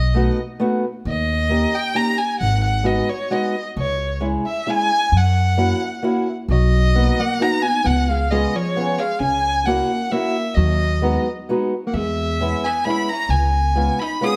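A bittersweet, whirling musette waltz in B major at 132 BPM, cut from a longer piece, led by a single bowed violin with a smooth, vibrato-rich tone singing up front. A woody pizzicato upright bass and a boxy fingerpicked acoustic archtop guitar carry the 3/4 lilt through chords such as B7, G#m7 and Bmaj7, and a clean, dark hollow-body electric jazz guitar adds a quieter second line from 6.5 s. Close, detailed microphones and light reverb keep the small ensemble intimate.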